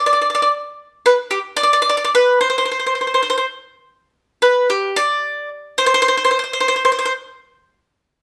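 A solo acoustic mandolin, woody and up front with the shimmer of its doubled strings, plays a wistful, romantic Italian folk fragment in a rubato 6/8 lilt, moving into a new passage at 4.1 seconds and ringing out by 7.1 seconds in a moderately reverberant large studio.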